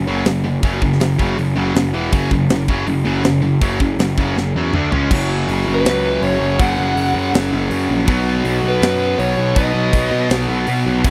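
A driving 4/4 pulse at 161 BPM opens this short, dark and epic heavy metal clip, cut from a longer piece, with a straight feel that drops into half time at 5.1 seconds. A double-tracked, high-gain distorted guitar plays the riff throughout, bright and up front, while a growly fuzz bass, picked and overdriven, holds down the low end from E1 to B2. A tight metal drum kit, with bright cymbals, a medium-tuned snare and a tight kick, comes in at 0.2 seconds and plays a fill just before the half-time section begins. At 5.7 seconds a bluesy lead guitar enters with a distorted, warm tone and slapback echo, playing a melody between B4 and F#5 before dropping out at 10.3 seconds. The harmony centres on F#5 power chords, passing through E5, D5 and C#5 and later touching B. The mix is dry and close, in the manner of a 1970s studio recording, with the rhythm section pushed forward.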